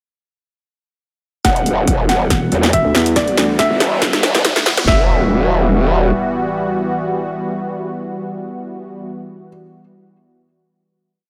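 A growling, saturated bass with shifting wobble speed anchors this menacing, chaotic heavy wobble dubstep piece at 140 BPM in half-time E minor, joined at 2.3 seconds by a dark, nasal vowel-sweep wobble bass that answers it, while punchy, layered electronic drum kits drive a filter-swept build and fill over a lush, detuned sawtooth pad with sidechain pumping, a present baby grand piano repeats a riff through tape echo, and background risers and impacts lead into a final Emadd9 chord held from 4.9 seconds.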